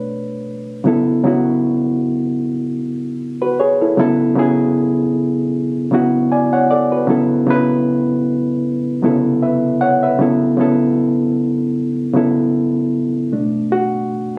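Soulful and smooth, this short excerpt of R&B settles into an unhurried 77 BPM in 4/4, with a gentle swing on the sixteenths and a B dorian color. A single bright reed electric piano carries the whole piece as a solo from 0.0 to 14.4 seconds, ranging from B2 up to G#5. Its tone is reedy and a little worn, slightly out of tune, and it sounds as if heard through built-in speakers while sitting up front in the mix. The harmony drifts from Bm9 through Bsus2, Esus24 and Aadd9 before returning to Bsus2, then shifts to Bm7 at 13.3 seconds as a brief new section begins. Captured on a phone in a small room, the instrument carries a moderate, short reverb.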